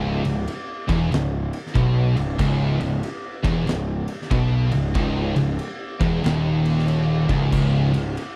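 A heavy, swung 4/4 groove drives this brief cut from a longer stoner and doom metal piece, held on a single minor chord with an ominous, brooding mood. Three distorted, picked guitars carry the low riff from the first moment: a compressed fuzz guitar sitting in the background, a bright, double-tracked high-gain guitar, and a dark, thick fuzz guitar kept very quiet. Up front, a growly picked electric bass adds overdriven fuzz, its direct-and-amped tone anchoring the bottom beneath the guitars. An oversized, low-tuned acoustic drum kit enters at 0.2 seconds with a punchy kick, fat snare, crash and ride cymbals, and a saturated, gritty sound in a pumping stone room. A small room reverb adds space, and the drums carry on to 8.4 seconds.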